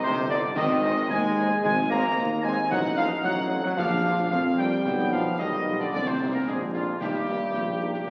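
Festive and spirited, this short passage cut from a longer military-style march for wind band moves at 112 BPM in a straight 2/4. A clear, distant trumpet section carries the melody, while a clear solo euphonium and a woodwind section with light vibrato and a vintage tone supply second lines beneath and alongside it. A close-miked trombone section holds sustained chords in the background, and a dark, soft-attacked tuba anchors the bass. A very quiet, roomy French horn section adds accompaniment from 0.3 seconds, and concert snare, bass drum and clash cymbals with dark-sounding cymbals sit back in a live room. The harmony moves from C minor through A-flat, a diminished chord and B-flat before settling on E-flat, and the whole recording has the crackle of a very old 78 rpm record, with a wet scoring-stage reverb.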